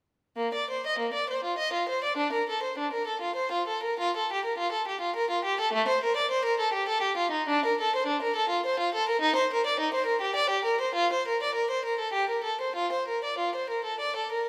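Serene and flowing, this baroque-style suite movement for unaccompanied violin moves in 3/4 at 102 BPM in Bb major, its beats uneven and shaped with rubato. A single rich, smooth violin sits up front from 0.4 to 14.5 seconds, bowed with vibrato and an even tone across a range from A3 to Eb5. A wet recital hall reverb surrounds the playing in this short passage cut from a longer piece.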